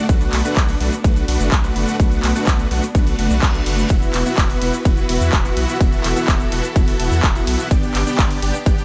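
A polished digital sheen surrounds this short cut from a euphoric, emotional festival progressive house track in a straight 4/4 metre. A huge, thick supersaw carries the riff, its detuned unison sawtooth layers backed by a sub octave, compressed and touched with vibrato and delay, pumping against the sidechain. Beneath it, a deep, saturated sine sub bass holds sustained low notes. A punchy, layered electronic kick sits up front, while a big-room kit adds cabasa, handclaps, hi-hat and ride cymbal in a studio ambience. A lush, close string ensemble bows sustained chords in the background, also pumping, as the harmony moves from Bm7 to Esus2 and lands on G. A faint reverse cymbal rises between 3.1 and 3.9 seconds to mark the change.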